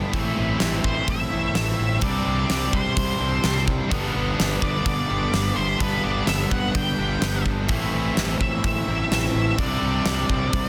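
A huge arena drum kit sits up front with a fat snare and punchy kick in a big room, driving this blissful, wistful shoegaze and dream pop excerpt in G major at 127 BPM, while a dark octave-fuzz lead guitar with distortion and tape echo carries the melody from 0.8 seconds. Two overdriven guitars play riffs beneath it: a warm, crunchy one with reverse reverb and a bright, biting one in the background with analog chorus. A very quiet, clean electric guitar plays fingered arpeggios and a growly fuzz bass with overdrive anchors the low end, all moving through Amadd9, Csus2 and G in a dense, heavily limited modern master.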